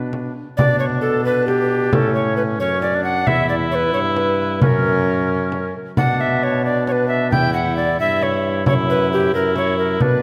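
A concert-hall reverb with a 2.2-second decay surrounds this solemn, courtly renaissance-style consort dance in B minor, moving in a straight 6/8 at 89 dotted-quarter beats per minute. An airy, up-front tenor recorder with a touch of chiff carries the second line over a close-miked trombone on the bass and a small, dry frame drum played with soft hands, and from 0.6 seconds a warm oboe with light vibrato sings the melody. The harmony passes from B minor through A, E minor and F sharp, returns to B minor and E minor, and arrives on F sharp seven as this passage, cut from a longer piece, ends at 10.2 seconds.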